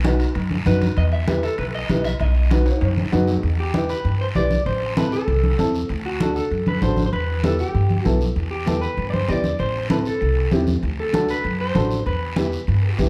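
A woody upright bass sits up front in this driving, danceable cumbia at 195 BPM, with mellow, vintage upright piano accompaniment and a dark, slightly broken-up electric guitar carrying the melody through spring reverb and slapback echo. Ringing congas played with soft hands and a raspy guiro keep the groove moving, while distant metal-shell timbales play only until 3.4 s, and a drum fill from 2.7 s closes the opening section. At that point the music settles into E minor, all within a dark, roomy studio sound in this short section of a longer piece.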